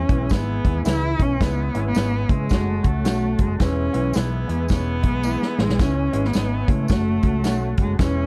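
Uptempo 1960s-style soul in E major, this joyful excerpt moves at 109 BPM in 4/4 with a light swing on the eighth notes. A rich, bowed cello carries the melody up front, its nasal, boxy tone shaped by vibrato, soft attacks and expressive portamento. Beneath it, a round, punchy fingered electric bass and a natural country drum kit with a punchy kick and medium-tuned snare drive the groove, while a clear grand piano adds accompaniment. A tonewheel organ holds sustained chords in the background through a slow rotary speaker and light overdrive, with audible key click, and a jingly tambourine shimmers faintly behind. The harmony cycles through E, C#m7 and F#m, and a drum fill at 5.3 seconds leads back into the progression, all within a dark production with little reverb.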